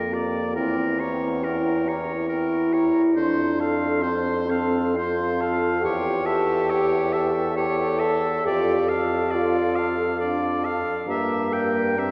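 Yearning and solemn, this slow romantic movement for wind quintet moves at 69 BPM in a rubato 3/4, settling in F major before turning toward D minor at 5.8 s, and it is cut from a longer piece. A mellow, hollow silver flute carries the melody with a pure straight tone over a bright oboe second line, while a clear, smooth-topped French horn and a warm clarinet set in the background supply the accompaniment. A dark bassoon with light vibrato anchors the bass up front, and the whole ensemble is heard from further back in a cathedral reverb that lingers long and dull at the top.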